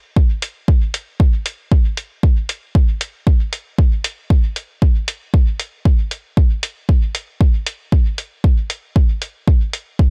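A deep electronic kick drum, layered and up front, opens this hypnotic techno excerpt at 0.2 seconds in a straight 4/4 at 116 BPM, joined at 0.4 seconds by a muffled, pitched-down, compressed sampler-style hi-hat sitting lower in the mix, the pair carrying on in a dry, close sound until the kick stops at 10.1 seconds.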